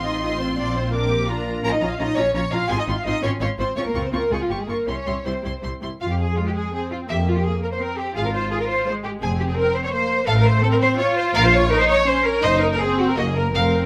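In a quick, rubato triple metre, this stormy, dramatic classical-period movement for string orchestra unfolds as a fragment of a longer piece, shifting into a new section at 6.0 seconds. A distant, lush first violin section carries the melody over a smooth-topped second violin line, while even, bowed violas fill in the accompaniment. The focused cellos and an expressive, up-front double bass section anchor the bass with vibrato, all set in light reverb.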